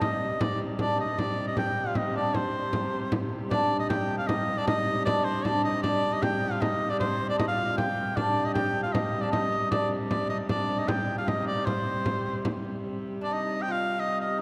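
A driving, ancient-sounding medieval dance in C minor at 154 BPM in 3/4, in which an up-front shawm carries the bright, vibrato-laden folk melody with a slapback echo, a delicate fingerpicked lute on gut double strings plays a second line, a rich, smooth wheel-bowed hurdy-gurdy holds the drone, and a small, close, dry frame drum played with hard hands adds percussion until 12.7 s, while the ensemble sits in a wet church reverb and a new section arrives at 12.8 s before the cut at 14.4 s.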